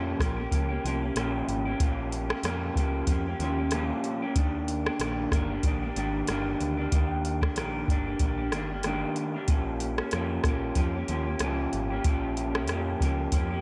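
Indie bedroom pop at 94 BPM in Eb mixolydian, this sunny, laid-back excerpt from a longer piece rides a gentle 16th-note swing over chords moving from Bbm6 to Ebmaj7 at 4.4 seconds and back at 9.5 seconds. A bright, twangy, slightly broken-up electric guitar through a small old amp sits up front with lush chorus and vibrato, while a deep, round, dark picked dub bass holds the low end. An overdriven analog rhythm box with a deep kick, metallic hi-hats and rim clicks enters at 0.2 seconds, all bathed in a dreamy plate reverb.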